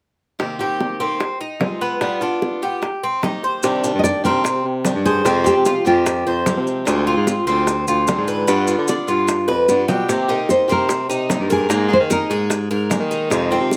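A full-bodied, fingerpicked nylon-string guitar sings the melody in short phrases from 4.0 seconds over a bright, metallic Cuban tres playing arpeggios and a boxy, swing-style picked acoustic guitar in this danceable Cuban son and guajira excerpt, with tight, high-tuned bongos throughout, a mellow, vibrato-laden baritone saxophone taking the bass line alongside grainy maracas from 3.6 seconds, and a brief fill at 9.5 seconds, all in a close, detailed mix with light reverb.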